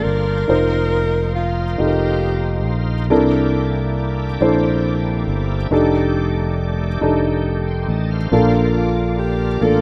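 Uplifting and jubilant, this slow gospel passage moves at 46 BPM in a straight 6/8, cut from a longer piece and tuned slightly below standard pitch. A warm alto saxophone carries the melody with vibrato and a smooth top, a tape echo trailing its lines, playing from the start until 2.8 seconds and returning near the close at 8.8 seconds. Underneath, a dark grand piano sounds mellow, worn and intimate, its action noise audible, while a bright tonewheel organ holds sustained chords with a full, shouting tone, lightly overdriven, with chorus vibrato and a slow rotary speaker. A fingered electric bass sits up front, round and punchy, direct and amped. The harmony moves through F7sus4, C13, F13 and Bbmaj7, all set in a lush hall reverb within a rough home demo mix.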